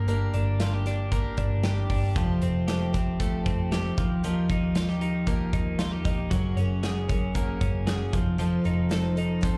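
Heard as a live gig through the venue's PA, with small-room ambience and club reverb, this breezy, nostalgic jangly indie pop excerpt at 116 BPM puts the bright, twangy, compressed arpeggios of a clean twelve-string electric guitar up front over a shimmering, boxy, octave-doubled twelve-string acoustic archtop with finger squeak, a dark, round, foam-muted picked bass, and a big rock kit with a boomy kick and medium-tuned snare, as the chords move from Gm through Fadd9, Ebadd9 and Gbadd9 to F7.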